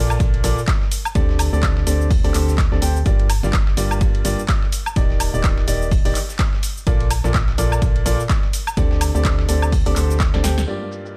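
Energetic and soulful, this piano house excerpt at 126 BPM swings its sixteenths over a clear, woody upright piano riff and a hollow, organ-like FM bass, both pumping with sidechain and the piano trailing a digital delay, while a punchy electronic kick, a house kit of handclaps, cabasa, woodblock and filtered hats, and a gritty sampler-style kit buried in the background drive chords from Bbmaj7 through D7sus4, Gm7 and Ebmaj7 toward a drum fill at 10.3 seconds and a band accent at 10.6 seconds.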